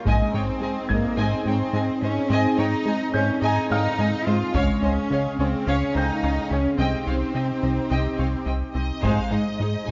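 A phased analog pad swirls through sustained chords over an up-front cello section carrying the bass line, while a very quiet baby grand adds high, short-sustained texture in this futuristic, tense hybrid orchestral and electronic film cue at 107 BPM. A punchy, funky analog bass riff with a fast attack and filter pluck drives the 4/4 pulse beside a smooth studio violin line and a background viola accompaniment. Hard-stick taiko hits land at 0.1, 4.5 and 9.0 seconds, and a focused, lush symphonic violin melody enters at 8.7 seconds, all set in a moderate scoring-stage reverb with a darkened top end over Ab, Db and C minor harmony.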